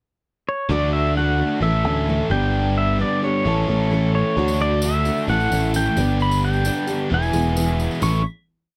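A straight 4/4 pulse at 131 BPM drives this hopeful, jangly folk and heartland rock piece in A mixolydian, where a bright, clean pedal steel guitar enters at 0.5 s with a compressed, motif-based melody of slides and volume swells over a full-bodied jumbo acoustic guitar strumming open chords with audible finger squeak, a biting, double-tracked overdriven electric guitar ringing out chords, and a dark, round, up-front picked bass playing a dotted figure, with a jingly tambourine joining at 4.5 s, all captured in a dry, close 1970s-style studio sound before the pre-chorus resolves on a final A chord at 8.0 s.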